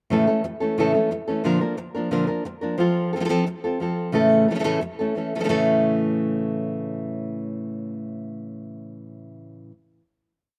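A solo nylon-string guitar opens this short, complete flamenco piece, played up front at a brisk 178 BPM in a straight 4/4 with a fiery, dramatic mood. The guitar is acoustic and full-bodied, with fresh strings, a deep classical tone, and audible finger squeak as it moves between fingerpicked lines and rasgueado strumming with taps on the top. Its range runs from A2 to Bb4, and a slapback echo gives each attack a quick shadow. The harmony moves from A to Bb, then to F and back to A, driving the groove until about 5.5 seconds, when the guitar settles onto a final chord that rings until roughly 8.2 seconds. Light reverb surrounds the recording, which was captured outdoors, and the guitar sounds until 9.7 seconds.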